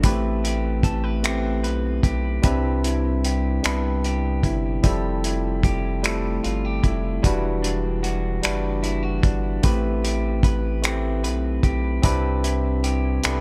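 This is a slow, sultry R&B piece in 6/8 at 50 BPM, cut from a longer work, and all four parts enter together at the start. A cloth-damped, thuddy drum kit sits up front, its tight kick, hi-hat and finger snaps sounding muffled and gritty with a rolled-off top. Beneath it, a round, deep analog bass with a fast attack holds long, dark, sustained tones. A barky tine electric piano, lightly overdriven through a combo amp, carries the accompaniment up front. An electric guitar at the edge of break-up plays a compressed, picked second line, washed in spring reverb and tape echo. The yearning harmony moves through Am9, Cmaj7, Fmaj9 and Em9 before circling back, and the whole group sits in a small room until the excerpt ends at 13.4 seconds.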